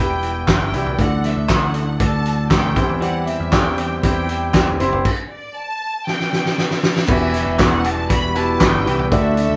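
Anthemic and warm, this piano-driven pop passage, cut from a longer piece, sets an expressive bowed violin section with vibrato and portamento over a clear, long-sustaining grand piano, a picked electric bass, a faint detuned sawtooth pad with a resonant filter swell, and a gritty, saturated indie drum kit with a fat snare and dark cymbals up front. A bright, scooped clean electric guitar riff joins in the background at 3.0 seconds. The band halts at 5.1 seconds, a drum fill enters at 6.1 seconds and a hushed reverse cymbal sounds at 6.8 seconds, then the band returns on the opening chord at 7.1 seconds in a moderate studio room.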